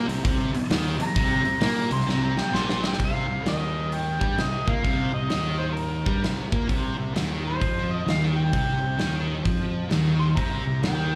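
A thick, double-tracked fuzz guitar riff and a bright, growly fingered bass with overdrive open this heavy, gritty blues rock and southern rock excerpt in C minor at 130 BPM, swung in 4/4, while a huge arena drum kit with a punchy kick and medium-tuned snare drives it from up front. A mellow, distant harmonica with overdrive and slapback echo enters at 1.0 seconds for a jazz-style solo full of tongue slaps and scooped notes, and a drum fill at 2.1 seconds leads into the next section at 3.0 seconds. The sound is a live gig heard through the venue's PA, with a touch of club reverb.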